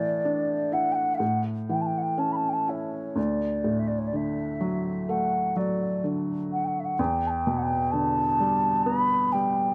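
A hollow wooden flute with a pure, vibrato-touched tone and a slapback echo sings a nostalgic, tender Celtic slow air in D major, with a soft felt-muted upright piano accompanying it from the first moment. Both sit up front in a dry, intimate outdoor sound, drifting in a rubato 4/4 around 63 BPM through Asus4, A, D and Em7. This brief excerpt, cut from a longer piece, ends at 9.7 seconds.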